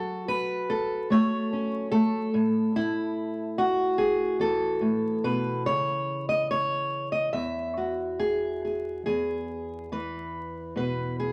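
A fingerpicked steel-string acoustic guitar opens at once and carries this brief folk passage alone, sitting up front with a warm, concert-style tone that spans from E2 up to E5. The mood is warm and pastoral, moving at 72 BPM in 4/4 but played with a loose, rubato feel. In E major, the harmony drifts from F#m through A5 and C#m to Eadd9 before settling on a plain E chord at 9.1 seconds, where a new section begins. A short, wet club-like reverb gives the guitar a clear sense of room, while vinyl crackle adds a lived-in patina. The recording is cut from a longer piece and ends at 11.3 seconds.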